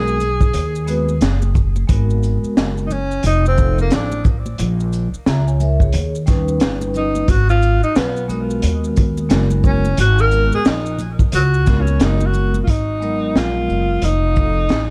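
A breathy tenor saxophone leads this smoky, mellow jazz-hop excerpt, its whispered subtone, scooped notes and vibrato colored by analog delay, and it takes a solo from 1.9 to 12.7 seconds over chords moving from G#m9 through F7, A#m7b5 and D#7b13. Beneath it, a crunchy breakbeat kit with a punchy kick and high-tuned snare swings gently and sits up front beside a woody pizzicato upright bass, while a vibraphone played with medium mallets rings darkly with a slow motor vibrato. Maracas and congas play with hard hands in the background until 12.7 seconds, and the dry, close sound leaves the whole groove feeling intimate.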